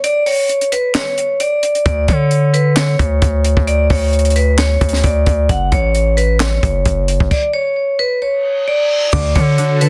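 A dense, heavily limited mix with light reverb carries this brooding, melancholic half-time trap piece at 132 BPM, where a bright, ringing vibraphone struck with hard mallets plays the melody through a low-pass filter and tape echo over a dry compact cocktail drum kit with a punchy kick and high-tuned snare, a saturated, aggressive 808-style bass enters at 1.9 seconds, an electronic reverse cymbal and downlifter arrive at 8.4 seconds, and at 9.1 seconds a twangy resonator pluck and a tinkling synth tine bell slip into the background, followed by a cloudy granular pad at 9.5 seconds.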